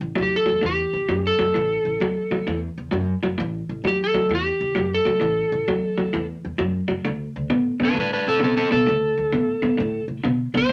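Blues with a swaggering, gritty swing at 131 BPM, this short cut from a longer piece moves over an A5 chord before shifting to D5 at 7.0 seconds. An up-front electric guitar through a small old amp plays a compressed, slightly broken-up picked riff, while an upright bass with gut strings gives a woody, dark, thumpy pizzicato bottom. From 0.2 seconds an electric slide guitar, played with fingerpicks and sitting up front, carries the warm, gently overdriven melody in a moderate studio room with a faint mains hum.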